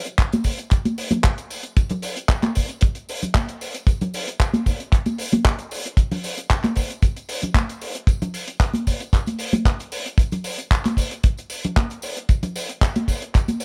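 A dry, close recording with little reverb opens this cosmic, groovy nu-disco excerpt, built entirely from rhythm in a straight 4/4 feel. A tight, dark kick drum sits up front with a smooth, rolled-off top and a touch of small room ambience, while a damped 70s drum kit adds handclaps and hi-hat in a muted, mellow tone. Warm acoustic tambourine and congas run alongside the kit throughout, sounding close and intimate.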